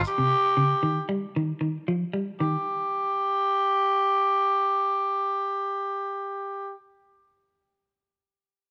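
Hypnotic and driving, this excerpt of afrobeat at 115 BPM in 4/4, with a light swing on the sixteenths, puts a raspy, growling tenor saxophone up front on the solo melody from 0.1 s to 6.7 s, while a clean, picked electric guitar with harmonic tremolo plays arpeggios over a rootless Abmaj7 until 2.6 s, after which the saxophone carries on alone in a small room with light reverb.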